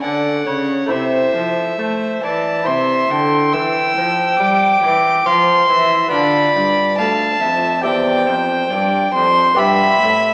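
A straight 4/4 pulse at 69 BPM carries this solemn, flowing excerpt of a baroque-style sonata movement with continuo, tuned to A4 = 439 Hz and moving from a rootless G#dim through Am/C, C and Bdim toward Em/G. Two period-style violins with gut-string tone and light vibrato play throughout, a rich, reedy one on the melody and an up-front one on a higher second line, while a dark, smooth-topped cello holds the bass and a bright, delicate fingerpicked lute with double gut strings fills in the accompaniment. The sound sits in a reverberant concert hall with a two-second tail, heard through a small-speaker tone.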